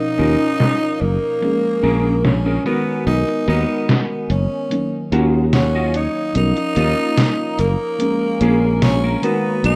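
A straight 4/4 groove from a detuned 8-bit drum machine sets a slow, woozy pulse, its hi-hat and medium-tuned snare crunchy with 12-bit sampler grit, muffled by low-pass filtering and swept by a filter across the whole passage. Under it, an up-front fretless electric bass sustains low, growly notes through a lush chorus. The mellow FM electric piano plays round, decaying chords with chorus and tape echo, while a semi-hollow guitar picks a bright, clean riff softened by chorus, a low-pass filter and tape echo, adding a clean fill from 4.7 to 6.4 seconds. A raspy, growling tenor saxophone carries the jazz-style melody with light vibrato and tape echo, and from 0.8 seconds a very quiet, warbly tape-like pad adds nostalgic, detuned sustain high above. The harmony drifts through lush chords such as Bmaj9#11, A#m7, G#m9/B and D#m9, and the hazy vaporwave mood is framed by a wet small-room reverb and a rough home-demo mix in this passage cut from a longer piece.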